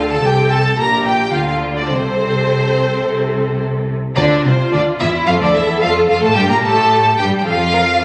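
A spirited, cheerful classical-period movement for string orchestra opens with all five sections sounding together in F major at a quick 109 BPM in straight 4/4, cut from a longer piece. A rich, focused first violin section carries the melody up front, while a clear, even second violin section traces a smooth second line, both bowed with vibrato. The dark viola section fills in the accompaniment with expressive portamento, and a lush cello section and a warm double bass section share the bass, their tops smooth. The harmony moves from D5 through Bb and Am/C before the second section arrives at 4.2 seconds on F, passing through Gmadd9 and settling back on F at 7.4 seconds. A scoring-stage reverb gives the strings a wet, spacious sheen, though the sound has a phone-in-the-room quality, with a club-like ambience and a dulled top end.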